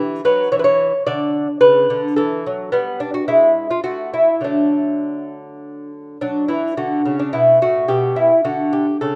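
In a supple, rubato triple metre moving at roughly 100-111 BPM, this flowing, radiant baroque-style dance in D major is carried by a solo fingerpicked lute, cut from a longer classical piece. The acoustic instrument sits up front with a bright, delicate tone from its nylon double strings, some of them octave-doubled, ranging from A2 to D5 under light reverb. Its opening phrase settles on D harmony, and a second strain begins at 6.2 seconds, turning toward B minor before the recording ends at 9.2 seconds.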